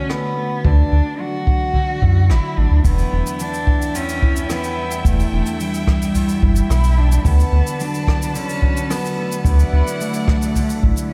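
A light small-room reverb frames this wistful, autumnal folktronica excerpt in E minor at 109 BPM: a distant, woody bowed cello carries the melody with vibrato over ringing, fingerpicked concert harp arpeggios, both touched with tape echo, while a deep, round analog bass sits up front beside a punchy acoustic kick, a brushed jazz kit adds cabasa, hi-hat and rim click, and a rich string quartet enters at 2.8 seconds with smooth, nasal sustained chords as the harmony moves from Bm7/D and Dadd9 to Em7 and back.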